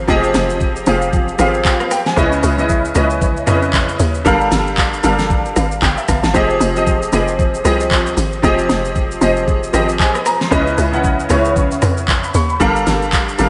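Amapiano with a deep, hypnotic, swung feel, this piece is built on a clear, polished concert grand piano that carries lush minor-ninth chords through an ensemble chorus, with a short piano fill arriving at 5.3 seconds. Beneath it, a tight, punchy log drum bass with a fast attack and a noisy edge works the low end, while an up-front, electronic R&B kit supplies a knocking kick, fat snare, warm hats, rim clicks, shaker and handclaps. A moderate plate reverb soaks the dreamy mix, and a rounded, subdued top end keeps it mellow.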